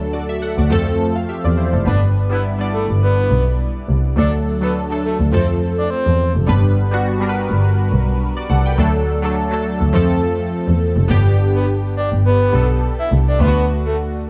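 Afrobeats at 104 BPM in G major with a light 16th-note swing, this romantic, sunny fragment of a longer piece pairs a bowed double bass, played up front with vibrato and gliding portamento, with round, detuned sawtooth analog keys carrying a filter sweep under chorus and phaser over a cycling G, D and F progression, while a soft, breathy flute-like synth lead with vibrato, chorus and digital delay sings from 1.9 to 6.3 seconds and returns at 11.5 seconds, all set in a studio reverb.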